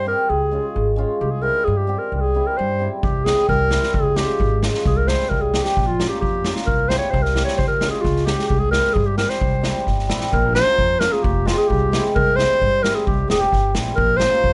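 In a straight 2/4 pulse, this soulful, festive klezmer excerpt sets a mellow, classically styled solo clarinet up front over a shimmering, hammered cimbalom and a woody, thumpy pizzicato upright bass on gut strings, with a polished street-band drum kit of boomy kick and snare joining up front at 3.0 s before a new section arrives at 10.3 s, all in light reverb.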